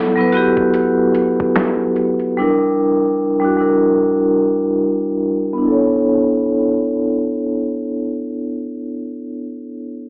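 A hazy, home-taped sound with light reverb and a muffled, small-speaker tone frames this melancholic lo-fi hip hop fragment in B minor at 74 BPM, swung on the sixteenths, with a filter sweep across its first 5.6 seconds. Up front, a vibraphone struck with hard mallets carries the chords from Gmaj13 through F#7b9b13 to Bm11; its metallic, ringing tone is coloured by slow motor vibrato, a boxy small room and cassette tape. A gritty, overdriven sampler-style drum kit of finger snaps, hi-hat, thumpy kick and medium-tuned snare sits low in the mix, heard only from 0.3 to 2.4 seconds.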